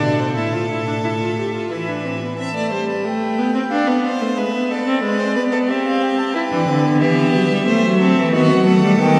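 The quartet sits in a wet church reverb with a long 2.9-second decay, heard from further back in the room, so the strings bloom into a solemn, serious haze. This is a baroque-style classical fugue in A minor at 90 BPM in a straight 3/4, tuned to A4 = 444 Hz and cut from a longer piece. A single bowed first violin carries the melody with a rich, smooth, even, distant tone and vibrato, while a second violin weaves its own line beneath in a clear, focused voice that sounds close. The viola, up front and rich with vibrato, fills in the accompaniment, and the cello, also up front with a smooth top and vibrato, anchors the bass before falling silent at 2.4 seconds and returning at 6.5 seconds. The harmony moves from a suspended opening through A minor, D minor and dominant colours toward a tense close on B7 over D#.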